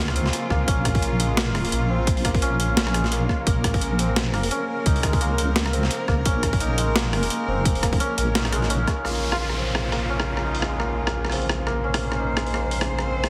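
Spacious and heavy, this half-time drum and bass excerpt at 172 BPM in Bb minor sets lush bowed cello chords, pumping against the beat, over a deep, dark wobble bass with chorus and a shimmering hammered santur playing gritty, filtered arpeggios through a digital delay, while an overdriven, pitched-down boom bap kit with a high-tuned snare drives the groove throughout, joined by a hard-clipped electronic kick until 9.0 s, when an electronic downlifter falls away and a very quiet plunger-muted trumpet sounds one brilliant wah-wah note at 9.3 s, all within an echo-chamber space and a heavily compressed, radio-like sound.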